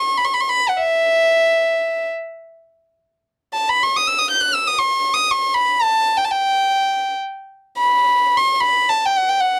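The recording is dry and close, in the manner of a 1970s studio session, with little reverb, so the instrument sits up front and intimate. This brief fragment of Persian modal music unfolds in free time in the E avaz esfahan, carrying a hypnotic, longing mood. A single bowed violin plays alone from 0.0 to 9.6 s, moving between E5 and G6. Played sul tasto, it has a soft attack, a pure, floating tone and a smooth top that keeps even the highest notes gentle. The passage falls into two spans of the same material, the first closing at 3.0 s and the second carrying through to the end, as if lifted from a longer meditation.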